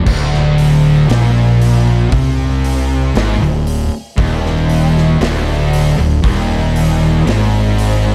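The recording has a dark, warm small-room sound, and this short excerpt of stoner and doom metal feels ominous and brooding in a straight 4/4. Up front is a round, overdriven fingered electric bass thick with fuzz, holding the low end from D1 to C2 across the full 8.1 seconds. Two thick fuzz guitars play the riff between D2 and C3 from the very start: one very quiet, the other warm, distorted and set in the background. At 0.1 seconds a double-tracked, high-gain distorted guitar joins on the same riff register, its picked attack adding edge to the heavy layers. A big acoustic rock kit enters at the same moment with a punchy kick, a medium-tuned snare, hi-hat and bright crash cymbal ringing out in a big room.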